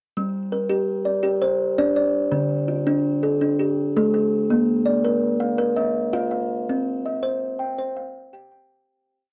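A solo kalimba, woody and hollow-toned with a ringing thumb-plucked attack, sits up front and spins an interlocking ostinato in the manner of a southern African traditional mbira cycle, moving in a straight 12/8 through Gm, Dm, Bb and C. The mood is warm and hypnotic, and the close, dry 1970s-style studio sound carries only a light reverb. This short piece fades out between 6.7 and 8.9 seconds.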